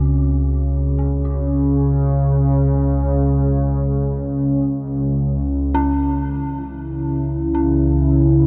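Dark ambient drone in free time and C# harmonic minor, dark and ominous, cut from a longer piece and steeped in a huge reverb and worn, warbling cassette-tape pitch drift. An up-front analog drone of evolving, detuned sawtooth and pulse-wave tones sustains low beneath eerie, inharmonic FM bell arpeggios with chorus and delay, while the harmony moves from C#sus4 to C#m at 5.8 seconds. A deep, moody pad of unison sawtooth and sine with a sub octave enters at 6.8 seconds, laying sustained chords alongside the bells.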